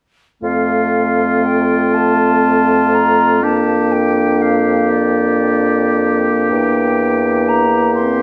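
A rubato 6/8 carries this lyrical slow movement for wind quintet, a fragment cut from a longer classical piece, with all five players sounding together from 0.4 to 8.2 seconds. An airy silver concert flute with a crisp attack and straight tone sings the melody above a clear oboe second line touched by light vibrato. Beneath them a soft-edged clarinet sits in the background, and a warm French horn with vibrato and a mellow bassoon bass fill out the harmony as it moves from F through Gm7/F to C7/E. A moderate recital-hall reverb sets the clarinet, horn and bassoon at a roomy distance, and the flute is also heard from afar.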